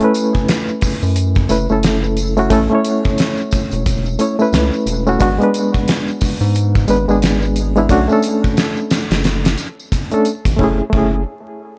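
Brooding and cinematic, this trip hop excerpt at 89 BPM in F# minor swings gently as a bright, reedy electric piano with overdrive, tremolo and tape echo carries the chords over a fat-snared, punchy gated 80s drum kit in a stone room, a round analog bass entering at 1.0 s, tambourine and triangle sitting dry in the background, and vinyl crackle hanging over the studio ambience.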